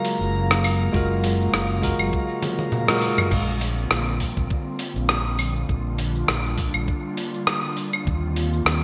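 Sunset chillout at 101 BPM in Bb major, relaxed and sunny, where a gritty, up-front sampler-style drum kit with gated reverb and a knocking electronic kick from 0.9 s carry an overdriven, punchy fingered bass, while a bell-like tine electric piano with digital delay and a glassy sine texture in the background drop out at 3.3 s after a drum fill and band accent, leaving an airy, breathy pad with chorus and 12-bit sampler grit to hold the chords under a lush hall reverb and bright 1980s-style digital production.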